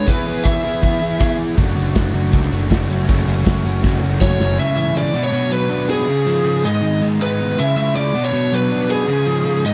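A straight 4/4 pulse at 160 BPM drives this restless, moody indie rock excerpt, where a bright, compressed overdriven guitar and a scooped, distorted guitar with analog chorus and tape echo play riffs throughout, a big rock drum kit with a punchy kick and pumping room sound plays until a fill ending at 4.6 seconds, a fuzzy, up-front picked bass joins at 1.6 seconds and stops with the drums, and a warm, overdriven lead guitar through a small cranked amp, touched with tape echo, carries the melody and returns at 4.2 seconds, all over chords moving from E through F#m to C#m and G#m in a dry room.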